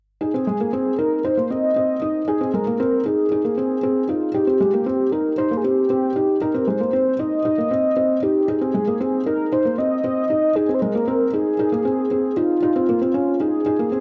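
A lush, wet hall reverb with a long 2.6-second tail bathes this moving, intimate electronica excerpt at 116 BPM in a straight 4/4. A velvety, detuned sawtooth synth lead carries the melody up front with chorus and vibrato, while a dark, felt-muted upright piano plays a riff through delay, its soft action noise audible close to the ear. Both parts sound from 0.2 to 14.0 seconds, resting on Ab before shifting to Dbadd9 at 12.6 seconds.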